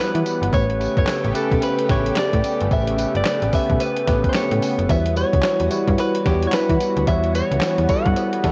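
A crisp 8-bit drum machine sits up front with a thumpy kick, handclaps, hi-hat, snare and tambourine in this slick, confident new jack swing R&B excerpt, joined by a snappy, metallic FM slap bass, a clean, picked electric guitar melody bathed in lush chorus, bell-like tine electric piano, a thick, detuned unison pad with chorus and phaser sustaining Em69 and A9 chords, and a very quiet cowbell, all captured as a home cassette recording with light digital ambience.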